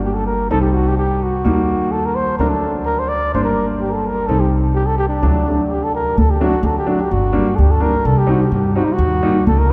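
A straight 2/4 pulse at 127 BPM drives this bittersweet, soulful klezmer excerpt in D phrygian dominant, with the opening phrase returning at 6.2 seconds. A dark, whispered cornet carries the melody up front with a soft attack and intimate jazz phrasing. A vintage upright piano supplies warm, short-sustained chords over Gm, Cm, Eb and D, and a pizzicato upright bass with steel strings adds a woody low end, all bathed in a long cathedral reverb.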